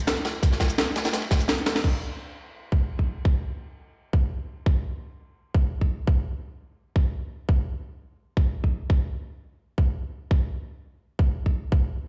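Drum and bass in a soulful, melancholic mood, this fragment of a longer piece opens with a compressed, gritty sampler-style breakbeat kit (crash, hi-hat, shaker and a high-tuned snare) layered with a saturated, dark-cymballed acoustic breakbeat kit whose ride and medium-tuned snare are high-pass filtered, and after a drum fill at 1.7 seconds both kits drop out by 1.9 seconds, leaving the tight, layered electronic kick, which entered at 0.4 seconds, up front in a light stone-room reverb as if played on a big sound system in a bare room.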